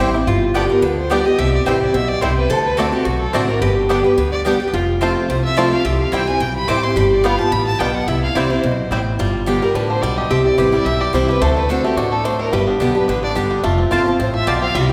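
A driving swung-eighth pulse at 216 BPM in 4/4 propels this joyful bluegrass excerpt, anchored by a thumpy, woody pizzicato upright bass up front and a boxy parlour steel-string guitar picking the accompaniment through chords centred on G, C and D7. A fingerpicked, twangy banjo carries the melody alongside a nasal, lightly vibratoed bowed fiddle that joins at 0.7 seconds, while a metallic slide lap resonator guitar plays a second line and a double-strung mandolin adds stabs until 9.0 seconds, returning briefly at 13.9 seconds. The ensemble sits in a wet, hall-like reverb that lends the acoustic strings a spacious sheen.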